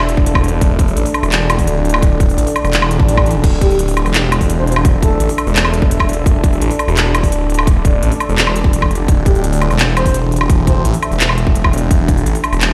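The sound is dry up close but fills a bare stone room, as if played through a big sound system. This half-time drum and bass passage, cut from a longer piece, runs at 170 BPM in 4/4 and feels spacious and heavy. A deep, dark ambient pad holds sustained chords from a D5 opening, its slow-attack sawtooth layers softened by chorus, built-in reverb and sidechain pumping. A thick, swirling detuned saw bass sits up front with a saturated, phased edge, alongside a tight electronic kick and a tape-tinged kit of crisp hi-hats, handclaps, crash cymbal and woodblock. A very quiet electronic swell arrives at 2.8 seconds. A breathy, flute-like synth lead with vibrato, delay and a cassette-tape haze drifts in the background at 3.6 and 9.3 seconds.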